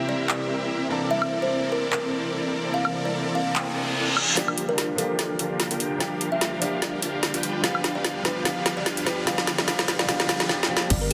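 A half-time groove at 147 BPM with a 55% swing on the sixteenths drives this dreamy, emotional future bass fragment in G dorian, tuned slightly sharp. A woody kalimba carries the melody with dub echo, while a clear baby grand piano sits in the background and a shimmering, ethereal pad holds very quiet granular chords under a moderate hall reverb. Up front, a huge, detuned supersaw riff pumps against the sidechain, and a trap kit with a woody snare and metallic hats brings claps, ride, crash and woodblock. A reverse cymbal arrives at 3.7 seconds, and from 4.4 seconds a build-up unfolds with drum fills and a filter sweep on the supersaw as the chords move from Gm7 to G7. At 10.9 seconds a punchy, tape-touched kick enters alongside a deep saturated sub bass on G1 and a round, tine-like synth pluck playing chorused arpeggios, all inside a dense, heavily limited master.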